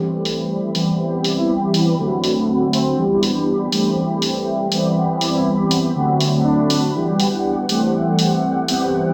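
Mellow synth brass sits up front with a round, detuned sawtooth accompaniment, sustained and thickened by chorus, phaser and tape echo, while a swirling string machine with 12-bit grit warbles in the background, dry analog electronic hi-hats run from 0.3 s, and a clear, punchy horn section carries the melody from 1.4 to 6.9 s in this funky, sensual filtered disco house excerpt at 121 BPM in A dorian, cycling through Am7, Cmaj7, D7 and Em7 under a filter sweep and echo-heavy spring reverb.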